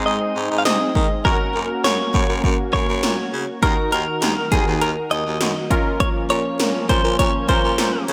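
Bright 1980s-style digital production with light reverb frames this nocturnal, melancholic synth-pop excerpt in Bb minor at 101 BPM, where a clean, compressed, direct-recorded electric guitar carries the melody through delay over chorused, detuned sawtooth analog keys in the background and a smooth, warbling analog pad of sustained chords, while a breathy, raspy baritone saxophone plays the bass with vibrato and punchy, up-front 80s electronic pad drums with a gated snare and metallic hats enter at 0.7 s, as the harmony moves through Ab, Gb, Ebm and Bbm.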